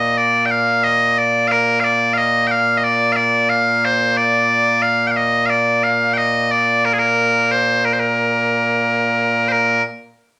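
Ceremonial and stirring, this short excerpt of Scottish traditional pipe music moves at a steady 90 BPM in a straight 4/4, set in Bb major. A lone set of bagpipes carries the whole performance, sounding from the start at 0.0 seconds until 9.8 seconds. Their tone is bright and piercing, a continuous sound held up front and played loud. The pipes span from Bb2 up to G5, a single part covering both low and high registers. A wet studio reverb with a short decay of 0.7 seconds surrounds the instrument, giving it a sense of space while keeping it close and present.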